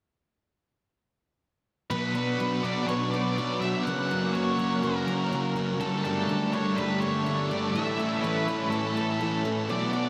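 A brooding, melancholic rock excerpt opens at 1.9 seconds with a thick, up-front fuzz guitar riff, a dark octave-fuzz lead melody trailing diffuse ambient delay, a twangy, compressed clean electric riff washed in reverse reverb in the background, a detuned sawtooth pad sustaining chorused chords behind it, and a very quiet, woody twelve-string acoustic shimmering through picked arpeggios over a Bm, F#, Gsus2, A progression, all soaked in a huge, dreamy reverb.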